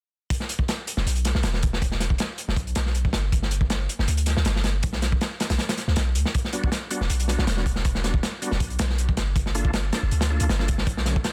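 Drum and bass with a jungle edge, this frenetic yet nostalgic excerpt runs at 159 BPM, driven from 0.3 seconds by a crunchy, saturated breakbeat kit with a punchy kick, a medium-tuned snare and hi-hat, sitting up front with a dark, rolled-off top. A deep, sine-like 808-style bass enters at 1.0 seconds with long, decaying notes under chords moving from E5 and G5 to Em7 and Gm7. At 6.5 seconds a reedy, bright tonewheel organ adds stabs with key click, chorus vibrato, fast rotary speaker and dub echo, all within a dense, heavily limited modern master.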